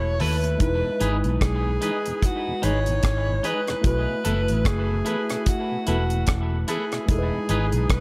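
Swung sixteenths at 74 BPM in 4/4 carry this tender, sweet lovers rock reggae excerpt in E major, where a deep, dry reggae drum kit with tight kick, hi-hat and rim click and a dark, round, punchy foam-muted fingered bass sit up front beneath a clear alto saxophone solo with jazz vibrato and tape echo, a gritty overdriven tine electric piano with phaser and tape echo, clean twangy guitar stabs with echo from 0.2 s, and a mellow tonewheel organ with chorus vibrato and a slow rotary speaker in the background from 0.8 s, the B7sus4 to Emaj7 changes bathed in moderate spring reverb.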